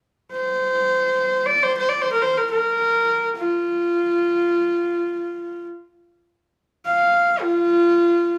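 A single bowed horsehead fiddle carries this Mongolian folk fragment from 0.3 s to 8.4 s, its clear, nasal, husky and earthy tone played with light vibrato and portamento across a range from F4 to F5. The music moves in free time with a galloping yet vast mood, tuned to A4 = 435 Hz. The fiddle sits up front in a large studio room whose moderate reverb lasts about 1.2 s.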